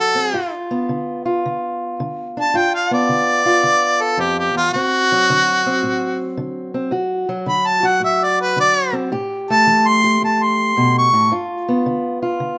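Swaggering and rollicking, this short cut from a longer acoustic country blues piece moves with a swung feel in four. A harmonica carries the melody up front, its tone soft in attack with a light vibrato and a jazz-inflected solo voice that runs until 11.3 seconds. Beneath it, a fingerpicked steel-string parlour guitar sits close and present, its dark, boxy sound keeping the accompaniment going to the end at 12.6 seconds. The harmony moves from G7 through D7 and an A5 before returning to G7. Moderate studio reverb gives the pair a little air, while the rough home-demo mix keeps the feel loose and intimate.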